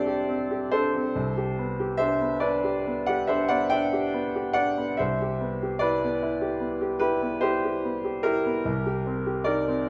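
A clear concert grand piano, up front and open with a deep bass, plays alone in this luminous, serene impressionist classical fragment, cut from a longer piece, moving in an unhurried rubato 9/8 at around 46-50 BPM in C lydian, tuned to A4 = 436 Hz. Its harmonies drift from Cadd9 through Am11/C to Cmaj7 at 5.0 seconds before settling on a rootless Abmaj7/C at 8.7 seconds. A moderate concert hall reverb with a 2.0-second decay surrounds the instrument.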